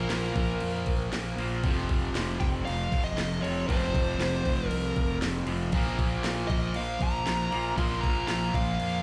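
A live club recording with little reverb carries a driving, aggressive hard rock excerpt at 117 BPM, where a smooth overdriven lead guitar with slapback echo sings a high melody over distorted and semi-hollow rhythm guitars riffing in the low register, a growly fuzz bass, and an up-front garage drum kit with a knocking kick, cracking snare and crash cymbal, moving through Bb5 and F5 power chords.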